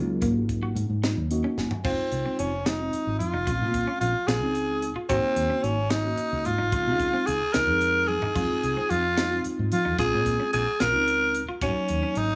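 This electric jazz fusion excerpt in 6/8 moves at 74 BPM in Ab mixolydian, with a soaring, bright mood despite its unhurried pace. A mellow tine electric piano with lush chorus carries the chords throughout, joined at the opening by a soft, detuned sawtooth pad that sits in the background until 1.8 seconds, while a foam-muted fingered electric bass anchors the low end. A clean, compressed electric guitar adds twangy picked stabs with subtle chorus from behind, and an airy, polished drum kit brings a punchy kick, a high-tuned snare, hi-hat, toms and crash cymbal, with a fill around 8.1 seconds. Up front, a growling, raspy tenor saxophone enters as the soloist at 1.8 seconds, its light vibrato and gritty tone trailed by analog delay. Light reverb places the band in a studio room as the harmony cycles through Fm7, Bbm7, Ab7sus4 and Dbmaj9.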